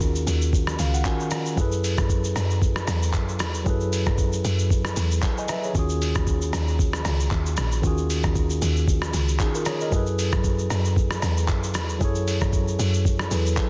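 A swung sixteenth-note groove in four drives this late-night amapiano excerpt, built on a lo-fi, sampler-style kit of handclaps, hi-hat, shaker, rim click and a thumpy kick that sounds pitched down, muffled and compressed, as if re-recorded in a large room, sitting up front with a tape-warm character. Underneath, a deep log drum bass supplies round, percussive notes with a fast attack and a mellow decay, its FM tone carrying a noise layer. A bright, clean tine electric piano, heard as if through its built-in speakers, outlines a dusky progression of minor eleventh chords and adds a short fill between 0.5 and 1.6 seconds. The mood stays deep throughout this single section, with all three parts playing together from the start. The sound is dry, finished with a dense, heavily limited modern master.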